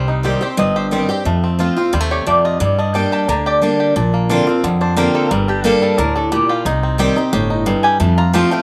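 Dry, open-air sound with almost nothing of a room around it frames this brief, rustic and lonesome bluegrass cut in G minor, moving at a brisk 178 BPM in a straight 4/4. A bright, up-front picked acoustic guitar carries the accompaniment over a woody, thumpy pizzicato upright bass, while a twangy, percussive fingerpicked banjo with a slapback echo shares the melody with a metallic, nasal lap resonator guitar played with slide. The chords move through Cm, F and Gm before a second section opens on Bbadd9 at 4.0 seconds, and the bass drops out at 8.4 seconds just ahead of the others.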